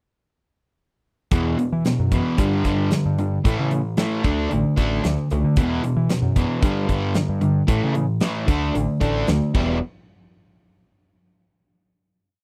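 Classic rock in E minor at 113 BPM, swaggering and gritty, with a huge arena drum kit up front, its punchy kick, fat snare and bright cymbals driving a big rock groove from 1.3 seconds. A crunchy overdriven guitar in the background and an up-front overdriven semi-hollow guitar with harmonic tremolo both chug palm-muted eighth-note riffs over a repeating E5–G5–A–D5 progression. A growling, round electric bass with overdrive plays a syncopated riff until the band stops at 9.8 seconds for a final hit, all in a dry, close 1970s-style studio sound with light reverb.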